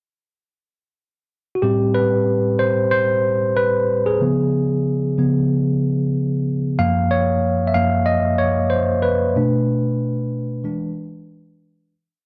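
A clean tine electric piano enters alone at 1.6 seconds with held, spread chords through its built-in speakers, set up front in a dark-toned production with a moderate echo-chamber reverb, to play a cinematic, bittersweet soul piece at 93 BPM in 4/4 with a light sixteenth-note swing, moving from Am9 through C#7 and F#maj7 to Bm7 and E7 before fading out from 9.4 seconds to its close at 11.9 seconds.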